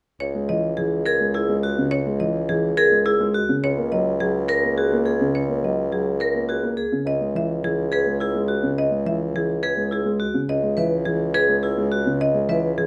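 A woody marimba struck with hard mallets and a bassoon sounding a low C#2 open this meditative, hypnotic stretch of minimalist classical pattern music in 3/4, cut from a longer piece. The marimba carries the melody between G#4 and E5, while the bassoon gives a warm bass line with a light vibrato. A dark, boxy grand piano joins at 0.3 s with accompaniment in its middle register. At 1.1 s a ringing, metallic vibraphone enters with airy arpeggios and a slow motor vibrato. The harmony moves from C#m to F#add9/C# and then E/C#, all over the bassoon's C#2. Close, detailed microphones and a light reverb keep each instrument distinct and clear.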